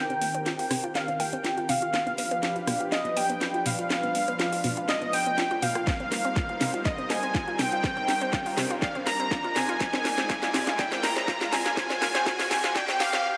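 Progressive house at 122 BPM in C minor, this dreamy, expansive build-up moves through Cm7, G7 and Bb7 as a smooth, detuned supersaw carries the melody up front, joined by a very quiet, crystalline wavetable pluck playing a second line, while a thick, warbling unison pad holds sustained chords and a round, nasal analog pluck with tape character spins arpeggios, the supersaw, pad and arpeggio all pumping with sidechain compression. Filter sweeps run across the whole passage on the arpeggio and supersaw sounds, a faint riser enters at 1.5 seconds, and a house kit with cracking snare, metallic hats and rim clicks plays a drum fill throughout, with a punchy layered kick joining at 5.9 seconds. A lush hall reverb bathes the mix, and the passage is cut from a longer piece.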